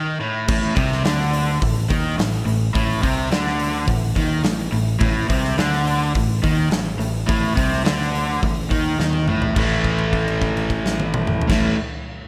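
A straight, driving 4/4 at 106 BPM powers this gritty blues rock power trio excerpt with a southern rock edge, as a crunchy, double-tracked overdriven guitar riff sits up front with spring reverb from 0.0 s, joined at 0.5 s by a growly, bright overdriven fingered bass and a big, dark acoustic rock kit with a punchy kick, moving from an Amadd11 groove through a drum fill into a held A5 note at 9.6 s in a small, lightly reverberant room.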